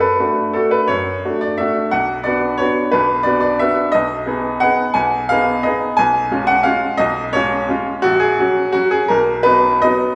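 A wet recital-hall reverb surrounds a bright, woody upright piano with a vintage character, placed up front in the mix. This sparkling, elegant classical waltz in 3/4 moves at 176 BPM with uneven, rubato beats. The solo piano ranges from A#1 to G#5 and passes through chords such as D/F#, Bm and C#7/B before settling on Bmaj7 at 9.1 seconds, in a brief cut from a longer piece.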